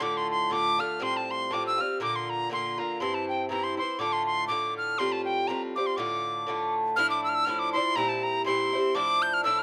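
A bright, chiffy wooden whistle leads up front with a pure, tongued, expressive tone touched by plate reverb, while a mellow Irish bouzouki, also up front, picks a metallic, double-strung accompaniment in this spirited, wild Celtic folk fragment with a swung two-beat lilt, moving into a new section at 7.0 seconds within a small room's moderate ambience.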